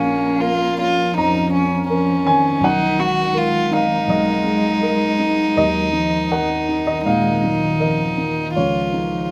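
A melancholic, reflective neoclassical piece for piano and strings opens with a rich, floating violin melody up front, a dark, intimate cello second line with vibrato, and a woody, boxy upright piano accompaniment, joined at 0.4 seconds by a calm, organ-like pad in the background with ensemble chorus and its own reverb, all at a rubato 81 BPM in G# dorian through chords moving from A#m to C#add9 in light reverb.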